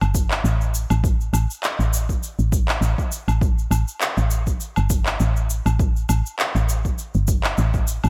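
A soft, round FM bass with a woody, dark tone sits up front, its fast-attack notes decaying and pumping against the sidechain across this short, mystical stretch of organic downtempo with a gentle sixteenth-note swing. A punchy, layered electronic kick enters at 0.1 s and stops at 7.8 s, while an electronic woodblock, shaker and handclaps, re-recorded in a small room, carry a gated reverb beneath it. The mix is otherwise fairly dry, with a bright 1980s-style digital sheen.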